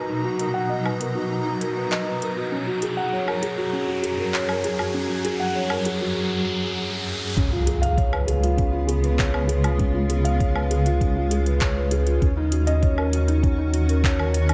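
Set in a moderate concert hall reverb, this passage of piano and strings electronica is cut from a longer piece and moves at 99 BPM in a straight 4/4, with an intimate, melancholic mood. A felt-muted upright piano sits up front, playing a boxy, dark and mellow riff with delay. Beneath it, a granular cloud pad holds blurred, detuned chords with sidechain pumping, moving from Bmaj7 to Gbadd9. An electronic riser drives the build-up, and an organic electronic drum kit of crisp hi-hats, handclaps and woodblock enters at 0.4 seconds, re-recorded in a large room. At 7.4 seconds the drop lands with an impact, a muffled, thumpy, pitched-down electronic kick, and a deep sawtooth-and-sine analog bass with sidechain pumping, while the harmony shifts to Db7 and then Ebm7.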